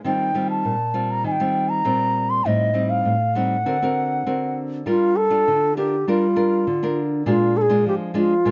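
This samba has a yearning, bittersweet mood, and the short section heard here comes from a longer piece. A reedy bansuri carries the melody from 0.1 s, its airy, bamboo tone shaped by vibrato and a soft attack, and it sits close and up front. Beneath it, a fingerpicked nylon-string guitar plays the accompaniment from the very start, with a woody, small sound and the warm character of old strings. The harmony moves through Eb69, Am7b5 and Daug7 before shifting at 4.9 s to Gm7 and then Bb7 for the second part of the passage. Close, detailed microphones and a light reverb keep both instruments intimate and clear.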